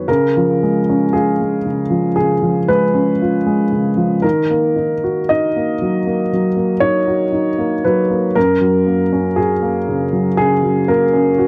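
A lone upright piano carries this intimate, tender neoclassical minimalist fragment, its woody tone sitting up front with audible action noise and a long sustain. Played rubato at roughly 58 BPM in 4/4, it unfolds slowly over about 11.5 seconds, moving from C# to D#m at 4.2 seconds and settling on F# at 8.4 seconds. The piano spans F#2 to D#5 and is tuned to A4 = 441 Hz. The dry, close sound recalls a 1970s studio, with little reverb, leaving a present, polished instrument that feels near at hand. Cut from a longer piece, this excerpt captures a single unhurried passage.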